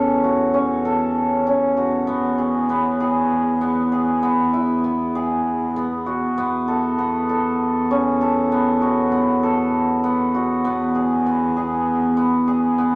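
A bright, ringing hammered dulcimer sits up front, spinning arpeggios in the middle register across this 13-second cut from a longer contemporary chamber piece in E major, set in an uneven 7/8 at 196 BPM counted in eighths. Beneath it, a single bowed double bass holds a low E with an earthy, slightly nasal tone and light vibrato, also close and present, while the harmony moves from F#m7 over E to E at 2.1 seconds. A moist studio ambience surrounds both players, lending the music a shimmering, hopeful glow.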